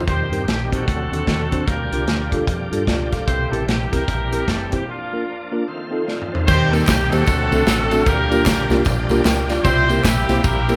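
A live-in-one-room sound with a moderate large studio reverb frames this soulful, reverent uptempo gospel cut at 150 BPM in a swung 4/4, taken from a longer piece. An up-front horn section carries the melody with a clear, vintage vibrato over a tine electric piano heard through its built-in speakers, a fingered electric bass with a foam-muted tone, and a punchy acoustic drum kit with a rolled-off top, while a full, shouting tonewheel organ with key click and fast rotary speaker holds sustained chords in the background. After a break at 4.9 seconds and a drum fill, tambourine and handclaps join at 6.5 seconds as the chords return to Eb6, D7, Gm7 and C7.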